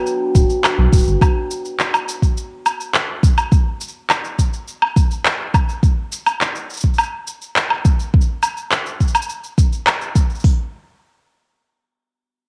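Folktronica at 104 BPM in 4/4 and G major, delicate and hopeful, opens on a Gmaj7 chord where a warbling, detuned, nostalgic pad sits in the background with chorus and reverb, a mellow, shimmering hammered dulcimer plays arpeggios through a low-pass filter and analog delay, and a round sine sub bass sustains low notes, all three stopping by 1.3 s. Electronic shaker, handclaps and woodblock enter at 0.1 s and an up-front electronic drum kit with a deep kick and crisp hats joins at 0.3 s, both re-recorded in a large room, and these drums carry on alone after the others stop, until about 10.6 s in this home cassette recording.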